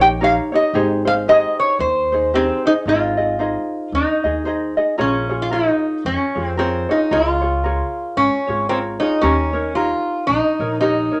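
A relaxed, sunny Hawaiian piece, cut from a longer performance, opens with a lap resonator guitar, ukulele and upright bass all sounding together at a swung 113 BPM in 4/4, in A-flat major. The resonator guitar carries the melody up front, played with slide and fingerpicks, its metallic, nasal tone softened by a mellow edge as it moves between C4 and G5. Close beside it, the fingerpicked ukulele supplies bright, light accompaniment in a middle register. Underneath, the pizzicato upright bass with steel strings gives a woody, dark foundation. The harmony drifts from Eb7 to Abmaj7, then settles into a new passage at 2.9 seconds that moves through Ab, Bbm7 and Db6 before returning to Eb7 at 9.2 seconds. A moderate studio reverb lends the trio a gentle sense of space, and the excerpt runs to 11.2 seconds.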